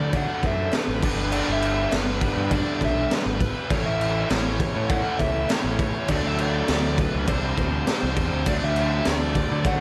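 A gritty, punchy garage drum kit sits up front with a high-tuned snare, kick and crash, driving this swaggering classic rock passage in D major at 101 BPM, joined by a very quiet metallic cowbell from 0.1 seconds. A bright, double-tracked overdriven guitar riff and a direct, modern picked bass carry the chords from D through G6, A and Csus2, while a distorted, bluesy lead guitar plays a melody above. A shouting tonewheel organ with slow rotary vibrato sustains chords, barely audible beneath it all in a small room with light reverb.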